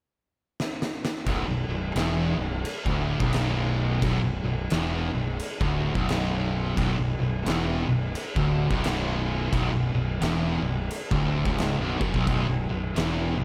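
Stoner and doom metal with an ominous, brooding mood, this passage is cut from a longer piece and moves in a swung 4/4. An oversized, low-tuned acoustic drum kit opens alone with a fill from 0.6 seconds, its fat snare, punchy kick and dark cymbals sitting up front in a saturated, gritty, pumping stone-room sound. At 1.3 seconds the full band crashes in on a single B minor chord: a bright, double-tracked distorted electric guitar carries the riff, joined by two thick fuzz guitars, one very quiet, the other a warm presence in the background. Beneath them, an overdriven fingered electric bass with fuzz, heard both direct and amped, adds a growly low end an octave under the guitars. A small room ambience surrounds the band, and the drums stop at 13.2 seconds just before the guitars and bass end at 13.4.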